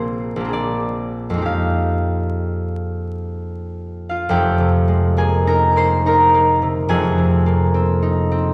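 A concert harp, fingerpicked and ringing, sits up front in this dreamy, serene classical solo, reaching from F1 up to C6 in a brief cut from a longer piece. Set in F minor in 3/4 with a rubato feel around 61-72 BPM, its warm chords drift from Bb9 to Fm9, then open onto Fm11 as a new section begins at 4.3 seconds. A long, wet reverb in a church or concert hall surrounds the harp, and a vinyl crackle adds a worn texture.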